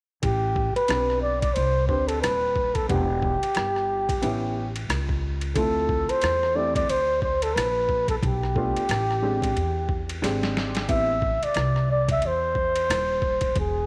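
A breathy, scooped flugelhorn melody with slapback echo opens this mellow, cool jazz-hop excerpt alongside a woody pizzicato upright bass carrying transformer saturation and a gritty, pitched-down boom bap sampler-style kit with a thumpy kick, joined at 0.9 s by a dark, slightly detuned upright piano with audible action noise, as swung sixteenths and chords moving from Am11 through Dm9 and E7alt sit in light small-room reverb, with a drum fill at 10.2 s.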